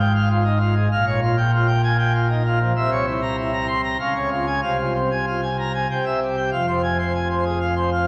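A stormy, majestic classical organ toccata excerpt in F minor at 97 BPM in 3/4, played on a solo pipe organ whose up-front, brilliant plenum of full mixtures spans F1 to C6 in romantic voicing, moving through dark harmonies from Fm/Ab through Gm7b5/Bb and a tense C7b9 before a new section arrives on F minor at 6.5 seconds, all carried by a wet church reverb with a 3.1-second decay.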